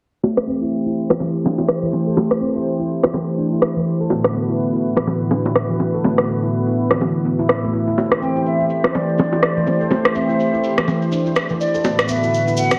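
A dense, heavily limited mix with small-room ambience frames this hypnotic, earthy afro house excerpt at 124 BPM, where a smooth, detuned sawtooth pad with chorus holds Am7 and Bm/A chords beside a ringing, meditative handpan playing arpeggios through a filter sweep and digital delay. Round, low-tuned bongos sit close and dry under an overdriven electronic rim click entering at 0.4 seconds, all riding a 16th-note swing. At 8.0 seconds a grainy, bright tube shaker appears low in the mix, and from 8.2 seconds a pure, hollow silver concert flute carries the melody with vibrato and delay.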